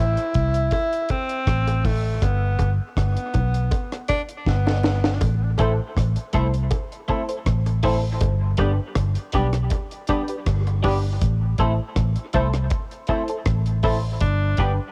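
A straight 80 BPM 4/4 pulse carries this meditative, heavy dub reggae cut in A minor: a round, foam-muted fingered electric bass and a dry, dark drum kit with a high-tuned snare and tight kick sit up front, while tight bongos with dub echo hover in the background and a clear tenor saxophone with light vibrato carries the melody through the opening break until 5.2 s, briefly joined by a breathy, subtone second tenor saxophone, before a twangy, compressed clean electric guitar and detuned sawtooth dub chord stabs with a filter pluck enter at 5.6 s over Am and G, the whole piece captured in a small room on home cassette.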